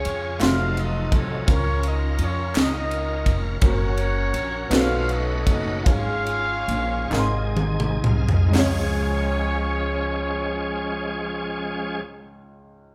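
Uplifting and reverent, this slow gospel excerpt in 6/8 and Db major moves at 39-56 BPM in dotted quarters, with a punchy, distant horn section carrying the melody over woody upright piano, a bright tonewheel organ holding sustained chords through a slow rotary speaker with chorus vibrato, and a growly pizzicato upright bass up front. A crisp fusion drum kit with a high-tuned snare and tight kick is joined by very quiet, human group handclaps, and the band plays live in one room with moderate large studio reverb. The tempo slows from 3.6 s into drum and organ fills at 7.1 s, and the piano rings on alone until 12.9 s.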